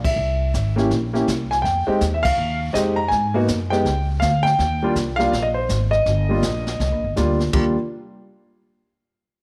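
A moderate echo-chamber reverb gives this relaxed jazz piano trio fragment, cut from a longer piece, an intimate studio glow, with a warm concert grand carrying the swung melody up front, its action noise audible and its low end deep. A woody, growly pizzicato upright bass sits close beside it, while a brushed kit with dark cymbals, a medium-tuned snare and a boomy kick stays further back. The band hits accents together at 0.0 and 2.2 seconds as the harmony moves from C7 through Fm9, Abm7 and Db to settle on Ebmaj9, and all three players stop by 7.8 seconds.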